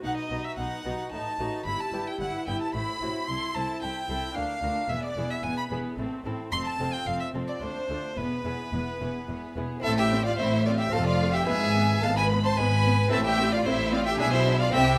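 Captured with close, detailed microphones in a moderately reverberant recital hall, this stormy, dramatic baroque-style concerto movement in 3/4 moves at 111 BPM from E minor into A minor at 3.3 s. A focused solo violin with vibrato sits up front carrying the melody alongside a soft-attacked, lush studio violin section, while a second violin section plays a second line in the background. A delicate, fingerpicked gut-strung lute and a smooth, distant chamber viola section provide accompaniment, an even cello section and a warm double bass section hold the bass, and a new section begins at 9.8 s.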